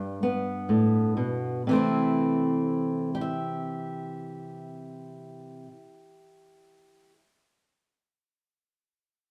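A straight 4/4 pulse at 61 BPM eases and slows over the first 1.7 seconds of this hopeful, tender folk fragment in C major. A fingerpicked steel-string acoustic guitar, up front and warm, carries the accompaniment from 0.0 to 7.2 seconds, ranging from G2 to E5 and moving from a G chord to C6 at 1.7 seconds. A live, single-room performance gives it a concert feel, wrapped in the wet reverb of a stone room.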